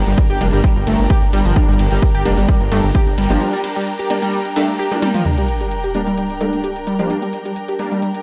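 An overdriven synth lead screams through this short cut from a driving peak-time techno track at 130 BPM in G minor, its gritty, guitar-like tone thickened by distortion, subtle chorus and dub echo as it riffs over a menacing detuned saw bass and a punchy kick that both drop out by 3.4 seconds. Aggressive rave stabs with chorus, delay and built-in reverb pump against a dark, bowed chamber string texture, while a techno kit of smooth hats, ride and toms runs throughout, with a drum fill leading into an electronic sub drop at 5.3 seconds. After the break, a filter sweep on the lead carries the final stretch, and the dark production keeps the mood relentless and industrial.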